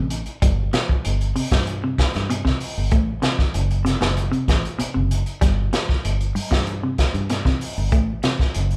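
A crunchy, saturated breakbeat kit of hi-hat, tight kick and medium-tuned snare sits gritty and up front at 96 BPM in straight 4/4, driving this hypnotic, intense afrobeat excerpt as a dark, round, foam-muted fingered bass and a clean, scooped semi-hollow guitar playing arpeggios move through G, Am69, G and Am6, heard as a band playing live in one room with light reverb.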